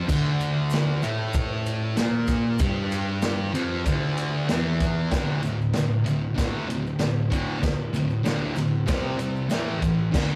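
A straight 4/4 groove from a vintage drum kit, punchy kick, medium-tuned snare and dark crash and ride cymbals with a rolled-off top, drives this raw, swaggering garage rock excerpt cut from a longer piece. A thick, double-tracked fuzz guitar sits up front with a bright, distorted picked riff over D minor, shifting to power chords on D, C and A after 5.1 seconds, while a grainy tube shaker sits very quietly beneath. The rough rehearsal-room sound carries tube saturation and a moderate studio reverb.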